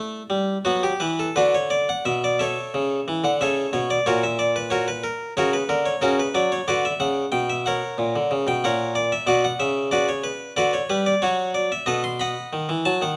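Close, detailed microphones and light reverb place a single bright, plucked Flemish-style harpsichord up front, its mid-forward tone drawn from one set of strings and spanning A#2 to C6. This introspective, flowing passage from a baroque-style classical suite movement sits in B minor at 92 BPM in 4/4, played with rubato and tuned to A4 = 437 Hz. The harmony moves from an opening Em through B minor and F# dominant colors, including an F#7b9b13 over A# at 8.0 seconds, before turning to B7 at 11.9 seconds as the fragment breaks off at 13.2 seconds.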